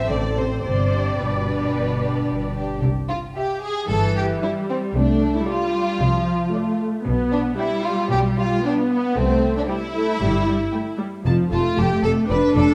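Spirited and lively, this quick classical-period movement for string orchestra moves at 114 BPM in a straight 4/4, set in C major with tuning slightly below standard at A4 = 438 Hz. A lush violin section carries the melody with expressive vibrato, while a second violin section plays a clear, smooth and even second line that sits up front. Close and expressive, the violas fill in the accompaniment with portamento and a warm, full tone. Underneath, a focused double bass section and a distant, even cello section share the bass, the cellos sitting in the background and entering at 0.1 s. Cut from a longer piece, the passage opens on A minor before moving into a longer section from 2.8 s that travels through C, Dm7/C, G/B and back to C before landing on F. A wet recital hall reverb gives the whole production a dark, warm character.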